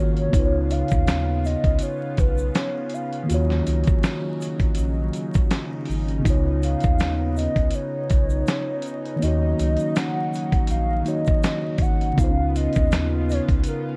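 On a lightly swung groove, this hazy, nostalgic lo-fi hip hop excerpt layers a gritty, up-front sampler-style drum kit with a thumpy kick, a grainy egg shaker in the background, a deep, round dub sub bass, a mellow tine electric piano softened by cassette tape, a lush, detuned unison pad, and a hollow, woody clarinet-like synth lead with chorus, tremolo and vibrato over Db7 and Ebm9 chords, all beneath a bed of vinyl crackle.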